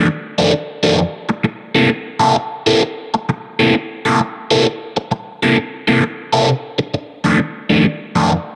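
Soulful and gritty, this brief blues excerpt cut from a longer piece swings at 131 BPM in C mixolydian as a lone crunchy, overdriven electric guitar plays up front with a phaser from 0.0 to 8.4 seconds, moving through F6 and C6 chords in a moderate spring reverb.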